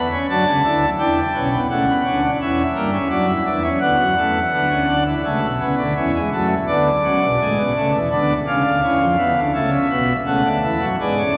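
A brilliant, full pipe organ plenum with mixtures and a romantic voicing sits up front in this elegant, joyful baroque-style three-part fugue, cut from a longer classical piece, with the solo organ ranging from A1 to B5 inside a long, wet cathedral reverb beneath a layer of vinyl crackle.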